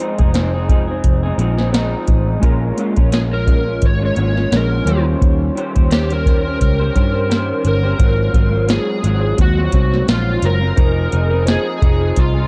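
A lightly swung 86 BPM groove in 4/4 rides on a soft vintage rhythm box, its deep kick, crisp snare and metallic hats overdriven and up front, while a round, foam-muted picked bass enters at 0.2 seconds in this lonely, wistful stretch of indie bedroom pop. A slightly broken-up electric guitar through a small old amp wavers with analog chorus and pitch drift, and warbling, detuned synth keys on cassette tape sit in the background until 8.0 seconds, moving through Fm7, Bbm7 and Eb13 before the harmony shifts to Ab13. From 3.1 seconds a dark, overdriven slide guitar carries the melody through ensemble chorus, all set in a dark production with digital ambience.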